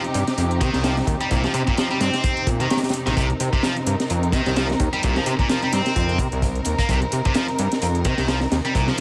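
A bowed studio string section opens this funky, playful breakbeat excerpt, holding sustained ensemble chords with vibrato, a focused tone and a smooth top, all pumped by sidechain, while a tape-warm analog electronic hi-hat sits in the background. At 0.1 seconds a fat, thick sawtooth bass arrives up front, detuned and sustained, with a fast attack, a filter sweep and tube saturation. An acoustic breakbeat kit joins at the same moment, its punchy kick and high-tuned snare sounding dark and gritty with a rolled-off top, and the groove swings on the sixteenths. At 0.6 seconds a bright, high-gain electric guitar cuts in up front with a picked, distorted riff, roughened by 12-bit sampler grit and trailed by delay. A small room ambience surrounds the parts, giving the groove a close, crunchy feel.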